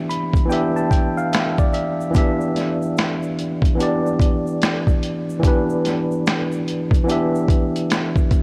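Melancholic and hazy, this lo-fi hip hop excerpt opens with a worn, slightly out-of-tune tine electric piano playing a fill on an Em7 chord over the first 2.1 seconds, sitting up front in the mix. A gritty, overdriven sampler-style drum kit with finger snaps, hi-hat, a thumpy kick and a medium-tuned snare enters at 0.1 seconds with a swung sixteenth-note feel. A grainy egg shaker sits in the background, and the whole recording has a cassette-tape character and light reverb.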